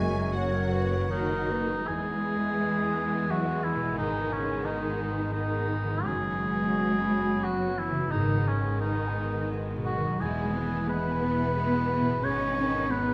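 A roomy scoring-stage sound frames this sorrowful, longing film-score passage in a rubato 3/4, where a distant oboe sits up front over lush bowed strings, with violins carrying a brief melody and a background line, a clear viola section accompanying, cellos and chamber double basses holding the bass, a ringing concert harp arpeggiating underneath, and an airy flute section and very quiet French horns ending by 1.5 seconds as a mellow clarinet slips in briefly from 0.4 seconds.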